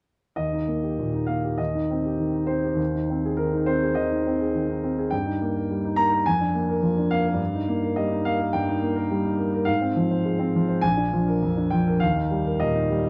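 A concert grand piano carries this brief romantic character piece alone, sounding from 0.4 to 13.1 seconds, its tone full of deep bass, open resonance and long sustain, placed up front. The mood is hopeful and passionate, and the rubato phrasing in a four-beat metre gives the line a sense of breathing freedom. The harmony moves through a sequence of shifting chords, several of them voiced over bass notes other than their roots, before settling home at 12.0 seconds. The piano ranges from a low Bb1 to Bb5. A light reverb surrounds the instrument, and the production leans dark and warm, lending the fragment, cut from a longer piece, an intimate, glowing quality.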